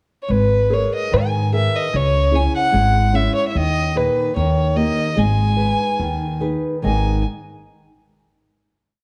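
Longing and passionate, this short fado-style ballad in a rubato 2/4 opens with a pickup from a dark, woody fiddle played up front, carrying a smooth-topped, motif-based melody of call phrases with light vibrato, while a small-sounding fingerpicked nylon-string guitar plays an oompah of bass notes and chord figures and an up-front pizzicato upright bass on steel strings sets root and fifth on the main beats, all three closing at 7.2 seconds within a lightly reverberant, warm production.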